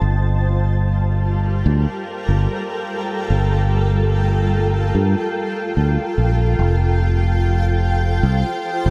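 Ambient dub at 73 BPM in G minor, tuned to A4 = 438 Hz, this short cut from a longer piece feels hazy and deep, moving from Gm9 to F7 at 6.6 seconds. A granular cloud pad holds sustained chords throughout, its blurred, detuned tone bright and evolving with slow attacks, long release and its own built-in reverb. Beneath it, a fingered electric bass sits up front with a round, dark, tube-saturated sound, all set in a light digital ambience.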